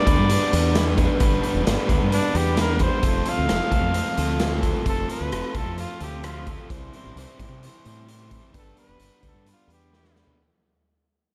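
A clear, vintage-toned trumpet solo with tape echo and scooped notes opens this wistful, carefree indie rock excerpt at 131 BPM in G mixolydian, riding over a bright, double-tracked overdriven guitar riff, a growling, round fingered bass with overdrive and a raw, saturated garage drum kit with a punchy kick and tape echo, all moving through G, F and C in an echo-heavy small room as the passage fades out and ends on a drum fill at 9.9 seconds.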